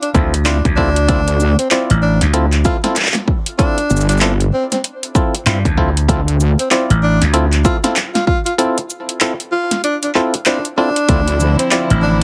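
Heavily compressed and radio-like with a dulled top end and light reverb, this funky, swaggering glitch hop fragment sets a close-miked, vibrato-laden tenor saxophone melody over a Dm9 chord, stringy clav stabs with 12-bit grit, tape echo and sidechain pumping, an overdriven pop kit with fat snare, metallic hats, handclaps and shaker, a punchy overdriven electronic kick, growly slap bass, and a heavy detuned wobble bass with chorus, while a break from 8.6 to 11.1 seconds gives way to gut-toned chamber strings entering at 11.1 seconds.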